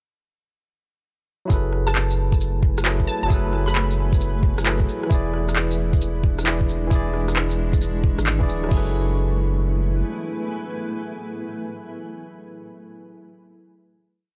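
A future garage piece opens at 1.5 s with a barky tine electric piano playing spread, held chords with syncopated pushes through analog delay, a round sine sub bass in long gliding notes, a muffled two-step kick, and a skittering shuffled kit of shaker, rim, claps and crash. The piano, bass and a blurred, evolving granular cloud pad that drifts in with its own reverb all pump under sidechain, while a crystalline wavetable pluck adds brief bright phrases coloured by chorus, 12-bit grit and tape echo. After the drums stop at 8.8 s the music rests on a final chord: the sub bass holds on until 10 s, and pad and piano linger in a wistful, nocturnal haze of gritty cassette sound.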